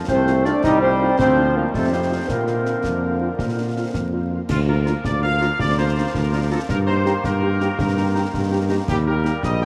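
Tight, vintage-toned trombone chords open this proud, spirited military march for wind band in Bb major at 109 BPM in 6/8. At 0.1 s a soft-attacked tuba bass enters up front, along with a warm euphonium second line that stops at 4.3 s, a woodwind second line with light vibrato, and close, dry concert snare drum, bass drum and dark clash cymbals. At 0.3 s a distant trumpet section takes the melody over a very quiet, loose French horn accompaniment, the band set in a vast, echoing space with huge reverb and vinyl crackle as the harmony moves from F7/C and Bb toward Eb.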